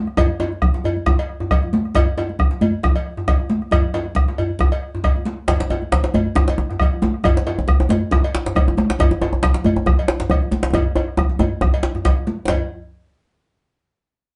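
A deep, dark bombo sits up front and close, anchoring this earthy, festive West African traditional drum ensemble at 137 BPM in 4/4, with a light swing on the sixteenths. Around it, congas with a bright, thin skin are played with soft hands and heard close and dry, while a metallic cowbell rings out from the small room. A medium-tuned djembe joins from the start with a roomier sound, and at 5.5 s a second djembe enters up front, close and dry, struck with hard hands. A drum fill runs from 10.7 s to 12.5 s, after which the music moves into a new section. The ensemble plays live together in a small room with a wet reverb and a rolled-off top end, in a short excerpt cut from a longer piece.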